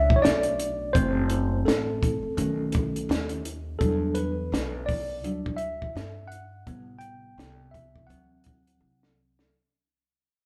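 A worn, slightly out-of-tune tine electric piano solos up front through this mellow, nocturnal jazz-hop excerpt, swinging over woody, thumpy pizzicato upright bass on gut strings and a dark, smooth compact cocktail drum kit with a high-tuned snare and tight kick, as the live-room band sits in a moderate large studio reverb, a drum fill arrives at 8.8 seconds, and the whole passage fades out.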